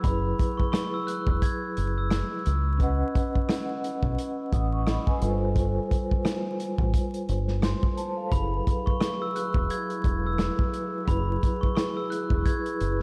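Boom-bap hip-hop at 87 BPM in F# minor, this short cut from a longer piece feels tough and gritty, riding a swung 16th-note groove over a light studio reverb and a layer of vinyl crackle. A warm soul drum kit sits up front with a punchy kick, a medium-tuned snare, rim clicks and hi-hat, its sound dark and smooth with a rolled-off top, while a deep dub fingered electric bass, round and direct, anchors the low end between E1 and C#2. A vibraphone played with soft mallets carries the accompaniment throughout, its ringing, mellow tone shimmering with fast motor vibrato. A bell-like glockenspiel struck with hard plastic mallets, colored by analog delay and a boxy small-room character, states the melody briefly at the start, then returns at 8.3 seconds. At that same point a soft, flute-like tonewheel organ enters in the background with sustained chords, spun through a fast rotary speaker, as the harmony cycles through suspended ninth chords on F#, C# and G.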